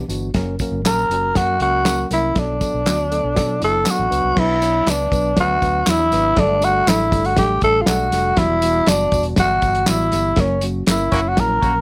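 A mellow, slightly out-of-tune tine electric piano and a round, foam-muted electric bass open this uptempo 1960s-style soul excerpt in B minor at 120 BPM, joined at once by a muffled, lo-fi drum kit with dark cymbals and a small-room tambourine and handclaps. From 0.9 seconds a raspy, growling tenor saxophone takes the lead up front, breathy with scooped notes and vibrato, carrying a passionate, urgent melody over chords moving from Bm through Gsus2 and Emadd9 to F#. A punchy, clear horn section enters at 11.1 seconds within a final band accent, all set in light reverb.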